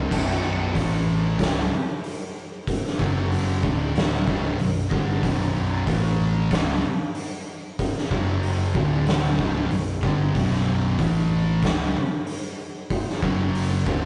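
A rough rehearsal-room sound with warm saturation and a dark, muffled top end frames this ominous, hypnotic stoner and doom metal passage, cut from a longer piece and sitting in a moderate studio reverb. Two thick fuzz guitars grind out a heavy riff from start to finish: one distorted and up front, the other pushed into the background. Beneath them, an overdriven picked electric bass adds a growly, punchy bite with tube saturation. An oversized, low-tuned acoustic drum kit sits up front with a punchy kick, a medium-tuned snare, hi-hat and crash cymbal, its gritty tone set in a bright stone room. The harmony cycles through a repeating run of power chords, returning again and again to B minor, so the whole 14-second stretch feels like one relentless, trance-like loop.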